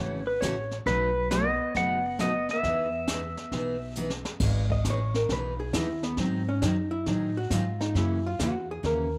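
A twangy pedal steel guitar, bright and up front with tape echo and volume swells, carries the cheerful, down-home melody from 0.9 to 3.9 seconds in this swinging western swing excerpt, after a brief lap steel phrase opens the clip. A full-bodied picked acoustic guitar, woody pizzicato upright bass and brushed jazz kit with dark cymbals and a boomy kick keep the shuffle moving. After a drum fill, the dark, hollow-body jazz guitar takes a clean, compressed solo from 4.4 seconds to the end, in a natural studio room with light reverb.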